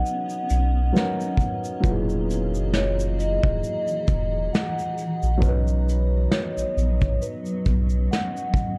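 Lo-fi hip hop at 67 BPM in B major, cosy and mellow, with a soft-mallet vibraphone carrying a ringing, filtered melody through analog delay over a woody, slightly detuned upright piano with cassette-tape colour, a blurred, evolving granular pad with its own reverb holding Bmaj9 and Emaj9#11 chords, a deep, round dub sub bass up front that stops at 8.1 seconds, and a smooth brush kit of tight kick, snare, hi-hat and shaker swinging gently on the 16ths, all in a dark, lightly reverberant cut from a longer piece.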